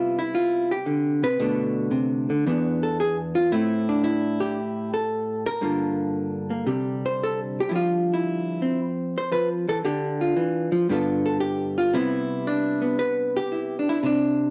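Solo jazz in C major at 114 BPM, swung in 4/4 with a warm, sophisticated mood. This excerpt from a longer piece features a vintage electric hollow-body jazz guitar playing alone for the full 14.5 seconds, its picked tone dark, clean and compressed and placed up front as it ranges from E2 to C5. The guitar moves through chords from Cmaj9 and Bm7 to Dmadd9 and G9 before returning to Cmaj9 at 11.9 seconds, captured as a home cassette recording with light reverb.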